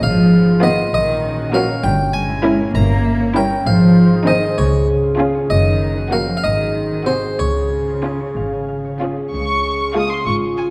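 Rocking in a straight 6/8 at 65 beats per minute, this playful, whimsical film cue in D-flat major has a magical mood and is cut from a longer piece. A brilliant, plucked harpsichord carries the melody from the start, while a ringing concert harp spins arpeggios and bowed double basses and a cello section, the most prominent voice, supply the bass. At 0.6 seconds the strings fill in: a chamber violin section adds a second melody with light vibrato and a smooth top, a studio violin section floats a second line, and violas play softly in the background, all bowed sul tasto with soft attacks for an intimate, close sound. The harpsichord drops out at 9.0 seconds, and at 10.3 seconds a mellow French horn section enters briefly with sustained chords. A dark production and a generous scoring stage reverb surround the ensemble with a soft glow.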